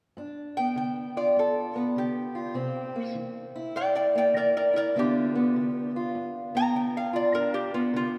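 Acoustic country blues for a duo, this short excerpt cut from a longer piece has a rollicking, swaggering mood at 101 BPM in 4/4, with a strong swing on the eighth notes and a G mixolydian flavour, tuned slightly below standard pitch. A fingerpicked steel-string acoustic guitar with a boxy, parlour-sized tone provides the accompaniment from 0.2 seconds, moving from G7 to C7 and back to G7. A lap resonator guitar enters at 0.6 seconds to carry the melody, played with slide and fingerpicks, its voice metallic and nasal as it rides above the accompaniment. Both guitars sit up front, with the resonator slightly louder. A lush church reverb with a long decay surrounds the pair, giving the recording the spacious sound of a church or concert hall.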